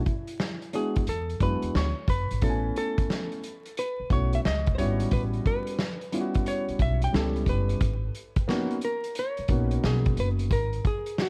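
Smoky and nocturnal, this short jazz-hop cut moves with a swung hip hop groove in 4/4 under a dark, warm production dusted with vinyl crackle and very little reverb. A clean, dark hollow-body electric guitar carries the picked melody from the very start, its line trailed by analog delay. The vintage drum kit enters almost at once, sitting up front with a punchy kick, a medium-tuned snare and hi-hat, its top end rolled off in a mid-forward studio-room sound. A mellow, intimate grand piano comps from 0.7 seconds with audible action noise, and a woody, growly pizzicato upright bass on steel strings joins at 1.1 seconds, standing as forward as the drums. The harmony drifts through lush extended chords such as Bmadd11, Amaj9 and a rootless A13 before settling on G#m11.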